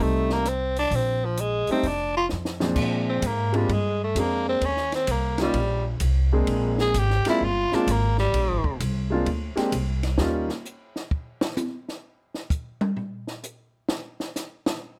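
A raspy, growling tenor saxophone with bright vibrato leads this playful small-group swing and bop jazz fragment at 129 BPM in Bb mixolydian, taking a gritty solo from 2.8 s until it drops out at 8.8 s. Up front beside it sit a clear grand piano and a woody, thumpy pizzicato upright bass on gut strings, with a compact cocktail drum kit mixed lower, its dark cymbals, high-tuned snare and tight kick sounding dry and natural. The drums take over with a solo from 10.2 s, and the close, detailed recording carries a light reverb.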